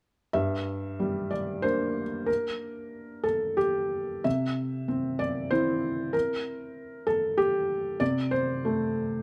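Neoclassical minimalist piano in G dorian, this short excerpt carries a melancholic, wistful mood at 94 BPM in 3/4, with uneven beats and a rubato feel that lets time breathe. A single felt-muted upright piano plays solo from 0.3 to 9.2 seconds, ranging from G2 to E5. Its tone is soft and mellow, with a boxy, intimate character, short sustain and audible action noise, and the instrument sits up front in the mix. The harmony moves from Gm to C at 4.3 seconds and settles on Csus2 at 8.0 seconds. A moderate studio reverb gives the close, thin-felt sound a modest sense of room.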